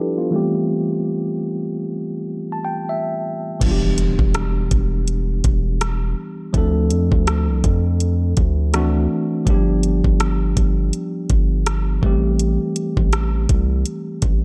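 A dark, warm mix with light reverb, digital ambience and a low-pass filter sweep sets a late-night, moody tone for this contemporary R&B excerpt, cut from a longer piece, with a swung 16th-note feel. A clean tine electric piano plays alone at first, through built-in speakers, moving from Am7 into a short fill before 3.6 seconds. The deep, sine-toned 808-style bass, with its fast attack and long decay, then enters with an electronic drum kit of knocking kick, metallic hi-hat, rim click and crash, while a background impact marks the change as the chords pass through Em7, Dm7, D9 and G7 before returning to Am7.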